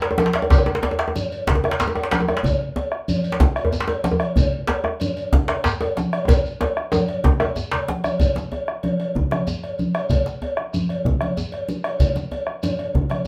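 This driving, earthy West African drum ensemble features a close, dry djembe played with soft hands, its warm, deep tone heard until it drops out at 7.9 seconds. A second djembe, tight and cracking with a vintage, band-limited edge, carries on alongside the dark bombo, both placed up front, while thick-skinned, medium-tuned congas sound from a live room. A metallic cowbell and a grainy, mellow shekere sit further back, each heard at a distance in a large room. The groove moves at 125 BPM in a straight 12/8, and a drum fill from 6.3 to 8.2 seconds links two statements of the same section. A studio reverb lends the ensemble a wet sheen, and the recording is cut from a longer piece.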